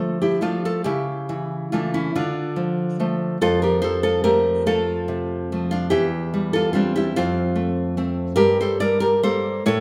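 Wistful and melancholic, this short fragment of a romantic piece for solo classical guitar lasts just under 10 seconds. The nylon-string guitar plays alone throughout, fingerpicked and up front, with a warm tone and an audible finger squeak. The pulse sits at a slow 48 BPM in 6/8, stretched with a free rubato, and the instrument is tuned to A4 = 444 Hz. Ranging from E2 up to D5, the harmony moves from Dm through A/C# and back to Dm, then opens onto F at 3.4 seconds before passing through C/E and F and arriving at Gm at 8.4 seconds. A wet recital-hall reverb from a church or concert hall surrounds each note with a lingering, resonant halo.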